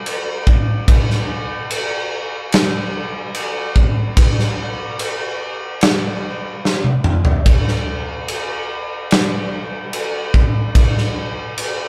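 Brooding and ominous, this short metal excerpt moves at a slow 73 BPM in a straight 4/4 feel. A big acoustic rock drum kit carries the whole passage, sitting up front with a punchy kick, a medium-tuned snare, toms and bright crash cymbals. The kit plays from 0.1 seconds to 11.8 seconds, cut from a longer piece. A drum fill arrives at 6.6 seconds and runs until 7.5 seconds. The sound carries the air of a big room with moderate studio reverb, captured as a band playing live together in one space.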